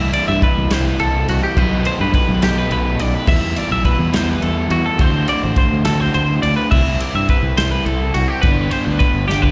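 Heard as a live gig through the venue's PA, this short passage carries a small-room ambience and a recital-hall reverb that give it an open, slightly distant feel. It's a playful, wistful piece of math rock and midwest emo in a straight 6/8, cut from a longer performance. A bright, twangy twelve-string electric guitar sits up front with clean, compressed picked arpeggios and a slapback echo, while a double-tracked overdriven guitar adds a crunchy riff beneath it, also treated with slapback. A round, punchy fingered electric bass anchors the low end, and a loose indie drum kit enters at 0.1 seconds with a punchy kick, medium-tuned snare, ride and crash, its top end gently rolled off. The harmony moves through C6, B7b13, Emadd11, D5, back to C6 and then G, and the drums close with a fill at 9.3 seconds.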